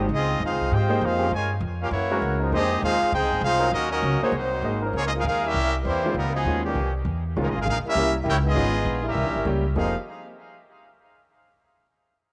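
Sultry and brassy, this big band swing passage is cut from a longer piece and moves at a brisk, swung pace in a minor key. A bright trumpet section with a smooth top carries the melody up front, touched by tape echo, while a muted trombone section in cup mutes plays a soft, veiled second line. An acoustic upright bass, plucked, woody and growly, anchors the band from the start, and a clear grand piano joins as accompaniment at 0.9 seconds, its intimate sound carrying audible action noise. Behind them, a dark trombone section with vibrato and a soft attack holds sustained chords in the background before dropping out at 5.2 seconds. Rich extended chords such as Dbmaj9#11 and Fm9 colour the harmony, and the second half rocks repeatedly between Db and C7b9 before settling back on Fm9 at 9.8 seconds, all set in a moderate echo chamber reverb.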